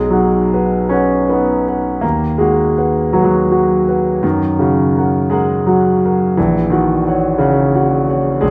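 Tender and nostalgic, this brief romantic nocturne for solo concert grand piano unfolds in 6/8 with free rubato, its warm, deep-bassed, natural tone sitting up front within a moderate recital hall reverb as it moves from B through B/D# and F# to F#/A# across its 8.5 seconds.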